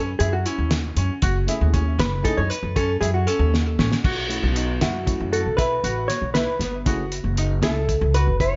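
This is a tense, intricate progressive instrumental in 11/8, cut from a longer piece, with a straight feel over a woody, thumpy pizzicato upright bass on gut strings and a cloth-damped, muffled drum kit with a fat snare, tight kick and dark, gritty cymbals. A dark, compressed hollow-body jazz guitar carries the melody, played with the fingers and treated with plate reverb and delay, and it takes a solo over the opening F#m7 until a drum fill at 3.5 seconds leads into a B7sus4. Underneath, a brilliant concert grand piano spins delayed arpeggios, while a clean, bell-like tine electric piano adds accompaniment from 1.5 seconds. At 4.8 seconds a breathy flugelhorn with vibrato and scooped notes slips in behind as a second line, before the harmony returns to F#m7. The small-room drums sound lo-fi and saturated, and the whole mix sits in light reverb with a softened top end.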